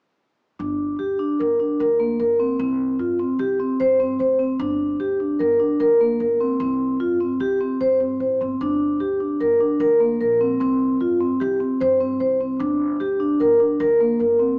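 The music moves in a straight 5/4 at 150 BPM, a contemporary chamber piece in an uneven meter that feels hypnotic and pensive. A vibraphone played with medium mallets and its motor off carries the arpeggios from 0.6 to 14.6 s, sitting up front with a metallic, ringing tone and a slightly boxy character between Bb3 and C5. An upright bass plucked on gut strings holds down the low end from G1 to G2 over the same span, woody and thumpy, though it sits far lower in the mix than the vibraphone. The harmony in G minor alternates between Gm and C5 every two seconds, giving the passage a circling, trance-like quality. A wet concert hall reverb surrounds the pair, while an overall small-speaker sound lends the recording a compact color, and this section is lifted from a longer work.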